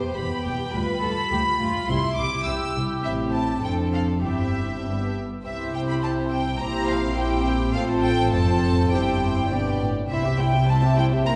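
A clear, floating violin section carries the melody high above this spirited, lively classical-period string orchestra passage in 2/4, played with rubato and cut from a longer piece, while a softly attacked second violin line and a dark, woody viola accompaniment with vibrato fill the middle. Cellos and double basses enter at 0.2 s with a gentle, pure bass, and every section bows sul tasto. Heard from further back in a concert hall with generous reverb, the music moves into a new section at 5.5 s before settling on a C chord at 10.1 s.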